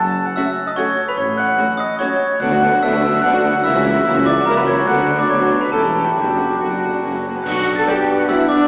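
Mischievous and quirky, this short cinematic film cue moves along at 145 BPM in 3/4 with a straight feel, in B minor. A bright, sparkling glockenspiel struck with brass mallets carries the whimsical melody up front, joined from 0.4 s by a smooth, bowed violin section. A clear oboe, a dark clarinet, a hollow, very quiet small flute group and a woody second violin section play a second line beneath. Rich cellos, lush double basses and a mellow tuba hold the bass, while an even viola section adds accompaniment and a soft-attack French horn section sustains chords. Clash cymbals, a cymbal swell and concert bass drum enter in the background at 4.9 s, and a bassoon joins at 7.5 s as the harmony lands on B minor with a band accent. A generous scoring stage reverb places the ensemble further back in the room, with a small speaker sound.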